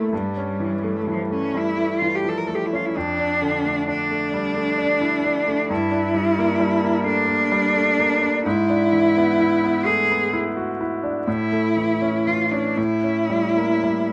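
A clear, smooth bowed cello carries a solemn, yearning melody with vibrato over a bright, intimate grand piano accompaniment with audible action noise and long sustain, in this fragment of a romantic classical duo that moves at a slow, rubato 43 BPM in 6/8, captured with close, detailed microphones and light reverb as the harmony passes from A7/G through Dm/F and Gm to A, then A7b9 at 12.8 seconds.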